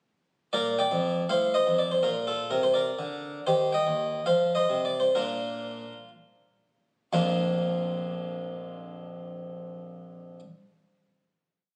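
This short classical piece is a baroque-style suite movement for solo harpsichord in Bb major and 6/8, flowing and radiant, with a rubato pulse of 58-84 BPM in dotted quarters that slows from 2.8 seconds to 7.1 seconds before a final held chord. The single-strung, French-style harpsichord sits up front with a round, plucked, mid-forward tone, carrying a tune in thirds over a walking bass. Tuned to A4 = 437 Hz, it was captured on a phone in the room, with moderate recital-hall reverb.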